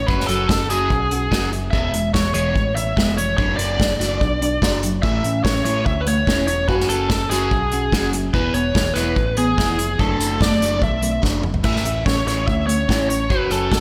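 Indie rock at 145 BPM, upbeat and carefree, with a biting, overdriven lead guitar carrying the melody over a double-tracked, phased rhythm guitar riff (both with slapback echo), a round, dark overdriven bass, and an up-front acoustic drum kit played with bundle sticks whose dark cymbals and tight kick enter at 0.1 seconds and drive a fill at 11.2 seconds, all through F#sus2, E, D/F# and A changes in a big arena-like reverb, in a short cut from a longer piece.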